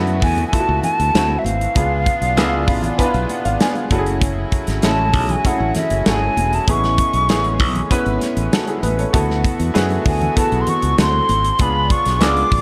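A straight 4/4 groove at 98 BPM from an up-front studio drum kit with gated reverb, a tight kick and a medium-tuned snare drives this upbeat, breezy slice of polished 1980s jazz-funk pop, anchored by a bright, growly fingered electric bass and very quiet, ringing congas. A clear baby grand piano with analog chorus comps through chords such as D6, C#7b9, F#m7 and Amaj9, adding a fill from 2.4 to 4.2 seconds, while a reedy, sweet accordion holds sustained chords in the background. Over the top, a pure, hollow concert flute carries the tongued melody with vibrato, all set in light reverb and studio ambience.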